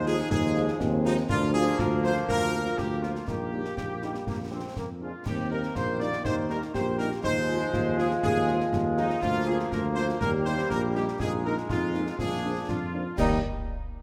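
This spirited, rousing military-style march for wind band opens at 0.0 seconds with a soft-edged, vibrato-tinged woodwind section and a warm, vintage-toned euphonium sharing a second line in the background. Beneath them, a clear trombone section holds sustained chords, and a mellow tuba plays the bass up front with a roomy, distant quality. From 0.1 seconds a clear trumpet section carries the melody with tight, lightly vibrato-inflected classical playing, while a very quiet, dark French horn section adds accompaniment, and concert snare drum, concert bass drum and shadowy clash cymbals drive the steady 2/4 pulse at 121 BPM with a straight feel. The harmony stays firmly in Eb major, moving through Bb7sus4 and Bb7 to land on Eb at 13.2 seconds. A moderate concert hall reverb surrounds the ensemble in this rousing excerpt from a longer piece.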